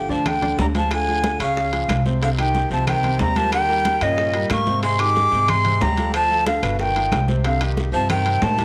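A reedy, airy concert flute carries the melody up front in this lively, danceable Afro-Cuban jazz excerpt, its tongued, straight tone ringing with a slapback echo high above the band. Set at 184 BPM in a straight 4/4 and in G minor, the 8.6-second passage moves through a restless chord sequence that runs from G5 and Ddim through Cm7, Eb7 and Abmaj7 before settling on Cm. A breathy baritone saxophone with vibrato plays a close-miked second line in its low register, while a warm concert grand piano with deep bass fills in the accompaniment. The pizzicato upright bass sits up front, dark and thumpy with gut strings. Congas, bongos, guiro, claves and timbales all come in by 0.3 seconds, with bright high-tuned congas, raspy guiro and ringing metal-shell timbales in the background, tight bongos and woody claves kept very quiet. A moderate echo chamber reverb with studio ambience gives the whole ensemble a lively sense of space.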